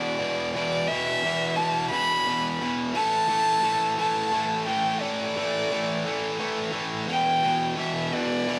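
A slow, straight 6/8 pulse anchors this melancholic, cathartic rock fragment, cut from a longer piece, as the harmony moves from E5 to Asus4 at 3.0 seconds and settles on Em7 at 7.1 seconds. A bright, overdriven electric guitar, picked and double-tracked, sits up front with a low riff. A single bowed violin carries the melody above it with a dark, woody vibrato and an analog delay, all inside a light small-room reverb.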